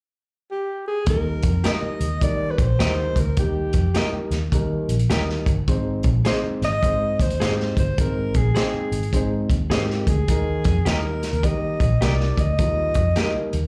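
Uplifting and warm, this uptempo 1960s-style soul excerpt swings at 104 BPM in Eb major. A breathy, whispered alto saxophone opens alone at 0.5 s, and a gritty, saturated breakbeat drum kit, a round, foam-muted fingered electric bass and a dark, woody upright piano join at 1.1 s. An electric guitar through a small old amp adds slightly broken-up stabs with harmonic tremolo from 1.6 s, while the sax, piano and guitar carry slapback echo as the chords move from Eb to Ab and back, the whole set captured as a live gig through the venue's PA.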